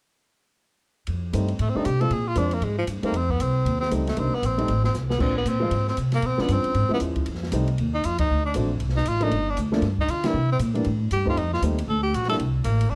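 Relaxed, swinging small-group jazz in the swing and bop mould, cut from a longer piece, where a bright, up-front tenor saxophone with vibrato and a soft attack carries the melody over a woody pizzicato upright bass, an intimate baby grand piano with audible action noise and short sustain, and a dark-cymballed drum kit with a punchy kick that plays a fill at 4.9 seconds before band accents land at 8.2 and 10.2 seconds, all in a dark production with light reverb.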